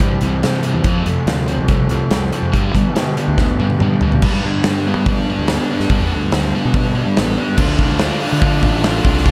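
Indie rock with a restless, moody edge, this short excerpt opens with a high-gain distorted guitar, its bright tone thickened by lush chorus and analog delay, riffing alongside a raw garage guitar whose overdrive sits in spring reverb. A growly, fuzzed fingered electric bass and a big, up-front acoustic drum kit with punchy kick, medium-tuned snare and bright cymbals drive the chords from C through F and G, with a drum fill at 3.4 seconds and a turn to Dm7 at 7.6 seconds. The production is dark and warm, set in light reverb and small room ambience.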